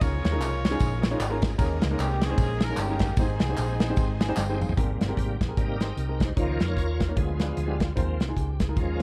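Uptempo gospel at 151 BPM in Ab major, swung and soulful with a reverent glow, cut from a longer piece. A tight, clear horn section carries the melody until 4.3 s over woody upright piano, a bright tonewheel organ with key click and slow rotary speaker holding sustained chords, a round, punchy hollow-body electric bass, an up-front acoustic drum kit in a small room, and compressed tambourine and group handclaps that drop out at 4.7 s. After brief piano, organ and drum fills, the organ takes a shouting solo from 4.8 s to the end, all in a dark, dry production.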